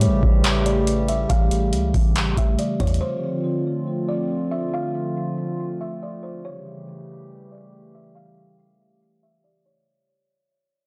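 A half-time 4/4 groove at 140 BPM, built from a booming analog drum machine with a deep kick, metallic hats and handclaps and a clean, sine-toned 808-style bass, drops away at 3.0 seconds, leaving a hollow, flute-like pad with chorus and sidechain pumping and a buzzing, woody kalimba melody through tape echo to carry this ethereal, melancholic cloud-rap excerpt over A7 and Dm7 chords, while a filter sweep and fade-out run through the dry, gritty recording with light digital reverb.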